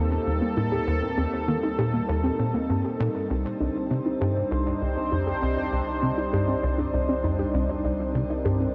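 Drenched in a huge, wet ambient reverb with a nearly eight-second tail and a soft, dulled top end, this short cut from a longer piece of sequencer-driven space music feels expansive and mysterious. It moves at 99 BPM in a straight 4/4, sitting in C dorian with tuning pitched at A4 = 444 Hz. Up front, a bright, resonant pad holds evolving, detuned chords through chorus and shimmer reverb, shifting from Eb6 to Cmadd9 at 3.3 seconds. Beneath it, a tight, punchy sequencer bass drives a sawtooth riff with a moving notch, thickened by lush chorus, cassette tape colour and tape echo. Further back, a warbling, lo-fi pluck traces mellow arpeggios through its own chorus, tape echo and shimmer. A deep, round sine sub bass sits very quietly underneath for the full 8.7 seconds.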